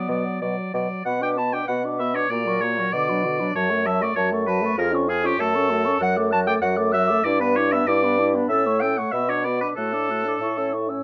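This is a classical-period movement for wind quintet in 2/4, cheerful and graceful in mood, taken from a longer piece. The silver concert flute carries the melody high in its range with a pure, metallic straight tone and crisp attack, though it sits somewhat distant. Beneath it, the oboe plays a second line that is up front, punchy and clear, with light vibrato, and it stops at 10.7 s just before the others finish. The French horn and clarinet fill in the accompaniment: the horn is close-miked with a gentle vibrato, while the clarinet stays roomy and in the background. The bassoon, entering at 0.1 s, anchors the bass with a smooth top and sits prominently in the mix. The recording uses close, detailed microphones with light reverb, giving the ensemble a clean, intimate sound.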